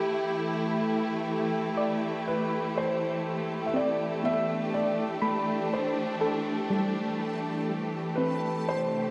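In a slow, straight 3/4 at 61 BPM, this reflective, spacious ambient piece moves from E minor to a Cmaj9 chord at 2.8 seconds. A felt-muted upright piano carries the melody from the start, its mellow, intimate tone touched with tape echo and the audible noise of its action. Beneath it, a lush studio string section sits up front, holding bowed chords with smooth vibrato. From 1.8 seconds a soft, round pluck adds gentle arpeggios in the background, darkened and thickened by chorus and tape echo. At 5.7 seconds a reversed, granular texture fades in on a single high note, dreamy and bright in its own reverb, while the whole excerpt rests in a concert hall's long, wet reverb.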